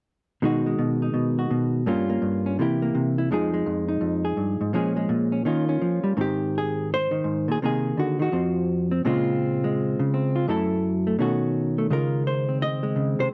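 A dry, close 1970s-style studio sound with light reverb frames this swinging, sophisticated solo jazz excerpt in Ab major at 168 BPM, where a dark, clean, compressed hollow-body electric guitar, fingered and up front, plays alone from 0.4 to 13.3 seconds across a range from F2 to Eb5, moving through chords such as Gm7b5, Bbm9 and Dbmaj9.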